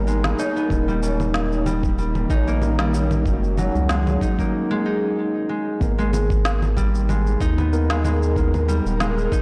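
Organic downtempo at 94 BPM in G# harmonic minor with an earthy, warm mood, this short excerpt sets a fingerpicked, ringing concert harp up front with tape echo over a round, deep analog bass with tube saturation, a gritty, thumpy electronic kick, a woody snare with electronic shaker and congas, a distant high-tuned tabla from 0.4 to 4.5 s, a mellow tine electric piano carrying a filter sweep and tape echo, and an ethereal, airy pad with ensemble chorus, the electric piano and pad pumping with sidechain, all through a blown-out, overdriven recording over chords moving from G#madd9 through D#7 and F#sus2 with a break at 4.5 s.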